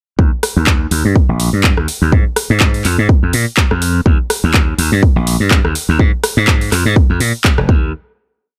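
Filtered disco house with a funky, sunny mood, built on a punchy four-on-the-floor electronic kick, a house drum kit of handclaps, rim clicks and sidechain-pumped metallic hi-hats, and a bright, up-front slap bass playing a syncopated line under a filter sweep from 0.2 seconds, all grooving together until a final hit at 7.9 seconds.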